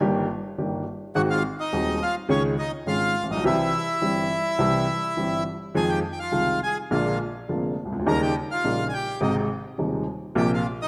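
A reedy, dark bandoneon carries the melody up front, entering at 1.2 seconds and singing from Db4 to Bb5 over a dramatic, passionate tango. Beneath it, an upright piano plays the accompaniment from the first moment, its woody, slightly detuned, smooth tone carrying a vintage character and long sustain across a range from Eb1 to Ab4. The pulse sits around 104 BPM in 4/4 but is played rubato, so the time stretches with feeling, and the instruments are tuned to A4 = 442 Hz. The harmony moves from Eb/G through Ab7, Dbsus2, C, Fm7, Bb7 and Eb7 to Ab, settling on Bbsus2 near the close. A moderate scoring stage reverb gives the pair a sense of space, and this short passage, cut from a longer piece, ends at 10.9 seconds.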